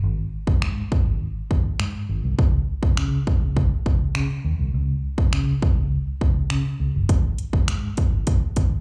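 A straight 4/4 dance-pop groove at 102 BPM in Ab major sets a carefree, summery mood in this short excerpt, as a house drum kit of punchy kick, metallic hi-hat and finger snaps enters at 0.5 seconds over a dark, round, foam-muted vintage fingered electric bass that pumps with sidechain, both parts up front in a live gig sound heard through the venue's PA with club reverb.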